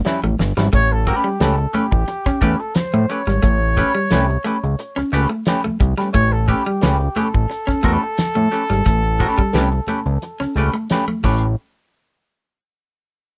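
This rough home demo mix, with light reverb, captures a funky, energetic stretch of funk cut from a longer piece, moving at 88 BPM in A mixolydian over an A9 chord. A damped 70s drum kit with a fat snare and tight kick opens with a fill while a hollow-body archtop guitar comps through a wah, a clean electric guitar picks a riff, a thick, saturated analog bass with a filter sweep sits up front, and soft-handed congas murmur very quietly underneath. From 0.7 seconds a dark trumpet with light vibrato plays a punchy, distant melody in jazz style, and at 11.6 seconds the chords drop out for a brief closing section.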